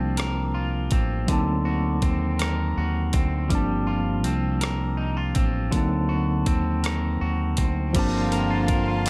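A clean tine electric piano, a twangy, slightly broken-up picked electric guitar and a dark, round fingered bass open this late-night, sultry slow R&B cut in 6/8 at 54 BPM in G minor, moving between Gm11 and D7b9b13. A gritty, compressed sampler-style kit with a thumpy kick, rim click, hi-hat and crash joins up front at 0.2 seconds, with the punchy bass beside it and a digital ambience around the band. Near the close, warm sul tasto strings with vibrato slip in quietly behind at 7.9 seconds, and a present, jazz-style horn section adds stabs from 8.0 seconds as the passage returns to Gm11.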